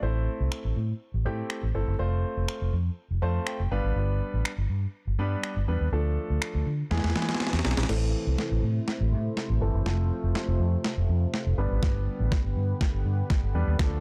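A round, foam-muted electric bass sits up front with a punchy, sidechain-pumped pulse, driving this confident dance-pop passage in A minor at 122 BPM through an Am, F, G, Dm, E progression. An intimate grand piano with audible action noise and long sustain plays filtered, pumping accompaniment, adding a fill around 3.0 seconds, while a crisp, overdriven 8-bit drum machine with a thumpy kick, snaps, hi-hat and crash enters at 0.5 seconds. At 7.9 seconds a detuned sawtooth pad with slow attack and chorus comes in, launching a build-up with a filter sweep and drum fills, all in a dark, dry production.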